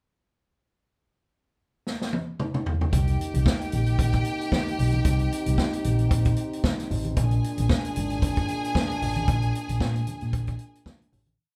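Driving and sultry, this short disco piece in C minor moves at 113 BPM with a light sixteenth-note swing, opening on a pickup bar where a vintage drum kit enters at 1.9 seconds with a fill before the verse lands at 2.9 seconds, bringing a dark, foam-muted fingered electric bass playing a syncopated line with chromatic approach notes, a lush violin section playing fast runs into held notes, a mellow French horn section holding a sustained pad, and very quiet, low-tuned congas with a syncopated groove, all over a punchy four-on-the-floor beat with sixteenth-note hats, moving from Cm7 to Bb7 in a wet, live-room sound before fading out from 9.3 seconds.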